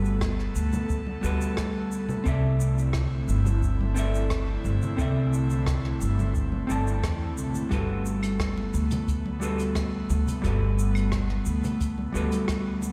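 A woody, pizzicato upright bass sits up front and anchors this smooth sunset chillout cut, taken from a longer piece in G major at a relaxed 88 BPM in a straight 4/4. A clean, picked hollow-body electric jazz guitar plays accompaniment with a touch of digital delay, while an airy, breathy pad holds sustained chords with a slow attack, long release and chorus. A brushed jazz kit keeps time softly with claves, hi-hat, rim click and shaker. A deep analog electronic kick enters at 0.2 s, and bright, compressed congas played with soft hands join in the background at 0.7 s. The harmony moves from Gmaj9 to C69 at 2.3 s and back to Gmaj9 at 7.7 s, all framed by a light, large studio reverb that sounds like a big sound system playing in a bare room.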